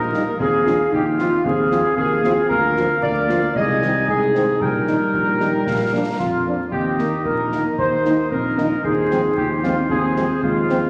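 In a straight 2/4 at 114 BPM, this rousing, proud military-style march for wind band in Eb major, cut from a longer piece, sets a punchy, up-front trumpet section with light vibrato on the melody over a dark euphonium and a warm, roomy woodwind section carrying second lines, a mellow French horn section accompanying in the background, a close-miked tuba on the bass, and close, dry concert snare and bass drum with dark cymbals, framed by a wet scoring-stage reverb and vinyl crackle.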